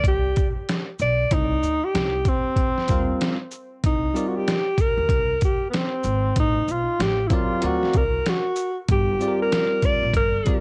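A breathy alto saxophone leads this cool, mellow jazz-hop cut from a longer piece, sitting up front as a punchy jazz-style solo with a subtone, vibrato, scooped notes and a smooth top, coloured by cassette tape grain, plate reverb and analog delay. Beneath it, a sampler-style trip hop drum kit plays from the start, compressed, pitched down and muffled, with a thumpy kick, a medium-tuned snare, hi-hat and shaker, also up front and coloured by tape. A pizzicato upright bass with steel strings adds a woody, dark low end, thickened by tube saturation, until it drops out at 10.4 seconds. At 2.9 seconds a bell-like tine electric piano enters with bright, clean, direct accompaniment, carrying its own tape texture and plate reverb. The swung groove and jazzy harmony, moving from a third-less C7 through F13b9/A and D7alt to Gm7, sit in a light reverb with the intimate feel of a home cassette recording.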